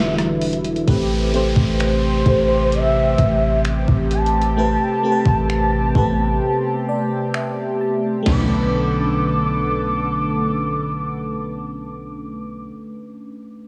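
A gated 80s digital drum machine, thumpy and overdriven with gated reverb on its snare, sits up front from 0.2 to 8.5 seconds in this longing, moody contemporary R&B excerpt at 65 BPM. It plays alongside a deep, round soft 808-style bass, and a glassy, bell-like FM electric piano with chorus and phaser that plays a fill in the break from 6.4 seconds. A shimmering, retro chorused pulse-width pad holds sustained chords, while a smooth gliding portamento lead carries the melody through chorus and tape echo, with a faint electronic downlifter alongside. The music moves through Em9, Am9 and Bm9 chords in light reverb.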